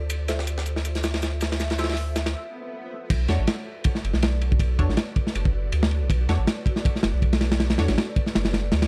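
The recording has a dark, warm studio sound, with a gritty, saturated breakbeat kit and a round sub bass both up front. This atmospheric, nostalgic piece of drum and bass and jungle runs at 160 BPM in B minor with a light swing on the sixteenths, and it is cut from a longer track. An ethereal, airy pad holds sustained chords throughout, softened by ensemble chorus and its own reverb. Beneath it, a deep, soft dub sub bass carries the low end, while the crunchy acoustic kit plays kick, snare, ride and dark crash cymbals with a rolled-off top. A compressed, pitched-up sampler kit adds hi-hat, shaker and snare until 2.3 seconds, and a muted, resonant dub chord stab with phaser and echo plucks in the background. After a short break and an electronic swell, the drop lands at 3.1 seconds, as the harmony moves from Dm7 to Bm7.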